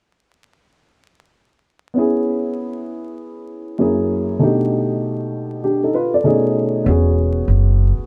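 Vinyl crackle and a dark, warm production frame this short hip hop excerpt, cut from a longer piece and set in light studio reverb. The mood is nocturnal and cool, moving at 98 BPM in 4/4 with a swung sixteenth-note feel. A dark upright piano carries the accompaniment from 1.9 seconds, its mellow, smooth, vintage tone sitting up front as it moves through jazzy chords: C#m7, F#9, B7alt, B13 and finally E6. Only near the close, at 6.9 seconds, does a pizzicato upright bass arrive, thumpy and woody in its lowest register. The pairing of the subdued piano and the brief, prominent bass gives the passage a smoky, late-night character.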